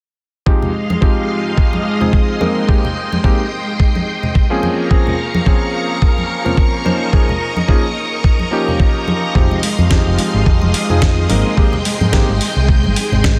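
A thumpy, gritty electronic kick sits up front at 108 BPM in 4/4, with a light 16th-note swing and warm acoustic congas giving this nu-disco cut in F minor a groovy, sensual lean from the start. A lush string machine holds sawtooth chords with a slow attack and ensemble chorus, while a vintage electric grand piano with a clangy low end, 12-bit sampler grit and delay plays accompaniment, both with sidechain pumping. The harmony moves through Fm7, Abmaj7, Bbm7 and Eb7sus4 before circling back to Fm7. At 9.4 seconds a dark, round, punchy picked bass with an envelope filter and tube saturation arrives alongside a very quiet, soft pluck playing arpeggios. A dusty sampler-style kit adds hi-hat and a fat snare from 9.6 seconds, and the piano stops at 12.3 seconds as this fragment of a longer piece closes, all under a light reverb.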